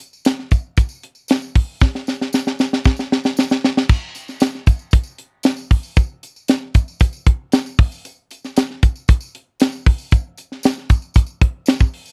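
A tight funk drum kit and a tambourine start together, setting a slick, urban pop groove in a straight 4/4 feel. The acoustic kit sits up front with a mid-forward, small-room character, its high-tuned snare and tight kick joined by hi-hat and crash cymbal. Behind it, the jingly, bright tambourine stays close and dry in the background. A drum fill runs from 1.8 to 3.9 seconds and leads into a new section that carries the groove on until the fragment ends at 12.1 seconds. The recording is a dry, close 1970s-style studio production with very little reverb, and it is cut from a longer piece.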